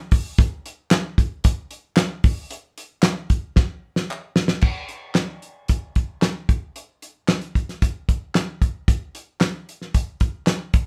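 A straight 4/4 pop groove at 113 BPM drives this warm, uplifting excerpt, where an up-front, damped 70s drum kit with a fat snare, tight kick and dark cymbals plays from 0.1 seconds, joined by hollow group handclaps in the background until 4.2 seconds, with a drum fill at 3.6 seconds leading into the next section, all captured as a band playing live in one room with moderate studio ambience.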